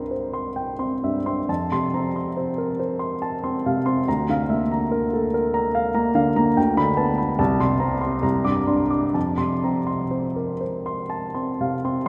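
A close, intimate grand piano opens this lyrical, hopeful romantic character piece in F major, moving in a flexible rubato 3/4 at 60-74 BPM and spanning C2 to D6. The warm, natural piano sits up front with its action noise clearly audible, while a long, wet cathedral reverb blooms around it in a church or concert-hall space. The 12.1-second passage, cut from a longer piece, moves from C through Bb/D, G/D and Csus2 before settling on F at 9.2 seconds.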